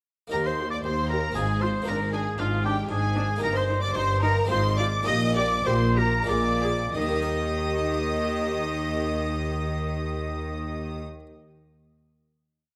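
In a straight 3/4 lilt at 87-117 BPM, this short, festive baroque-style concerto movement in Eb major has a lush, distant violin section singing the melody while a focused chamber violin section and a vintage-toned oboe double the tune at the octave, smooth violas sustain chords and repeat notes in the background, a bowed cello section marks the bass on the beats as an up-front double bass section doubles it, and a dry, round harpsichord rolls chords underneath, all slowing from 2.6 seconds into a final Eb chord at 6.9 seconds in a close, detailed sound with light reverb.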